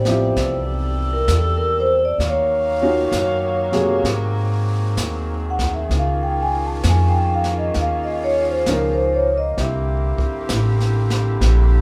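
A vibraphone played with medium mallets carries the melody in this tender, romantic jazz ballad, its metallic, ringing tone heard with the motor off and a boxy, small-room character; featured as the solo voice, it sounds until 10.5 seconds. Beneath it, a smooth, vintage-sounding grand piano supplies the accompaniment and drops out at 9.6 seconds, while a mellow saxophone section holds tight sustained chords with soft attacks and vibrato. The pizzicato upright bass sits up front, woody, dark and thumpy on steel strings, and a jazz brush kit joins at 0.1 seconds with brushed snare, hi-hat and a boomy kick in a swung 4/4. The harmony moves through Dm11, Ebm9, Ab9 and Db69 before arriving on C9. The band plays live together in one room, and a moderate large-studio reverb lends the performance an intimate glow.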